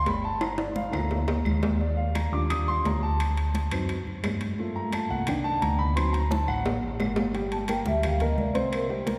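Afro-Cuban jazz with a fiery, driving energy, this piece opens mid-flow on a dark, mellow baby grand piano that takes the solo spotlight up front, its vintage tone carrying long sustain over rich minor-ninth and altered dominant harmony. Beneath it, a hollow-body short-scale electric bass, amped and played with the fingers, sits just as prominently, with a round, punchy low end. Bright, high-tuned congas played with soft hands stay close and dry in the background, while metal-shelled timbales ring out, and distant, woody claves tick away from a large room. Percussion fills punctuate the groove before the piano hands over, and at 7.5 seconds a vibraphone played with soft mallets enters with a brief melodic solo, its metallic ring shaded by fast motor vibrato and a boxy small-room character. The whole recording is bathed in a wet church reverb that lends the ensemble a cavernous, hall-like depth, and the excerpt is cut from a longer piece.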